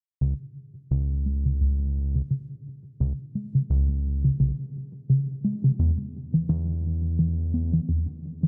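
A swung 86 BPM pulse in 4/4 drives this intricate, playful IDM fragment, where a rubbery, resonant acid bass arpeggiates through vintage 12-bit sampler grit and digital delay from 0.2 to 8.5 seconds over a round, detuned analog bass that sustains until 7.8 seconds, both up front in a dark mix with a 2.5-second plate reverb.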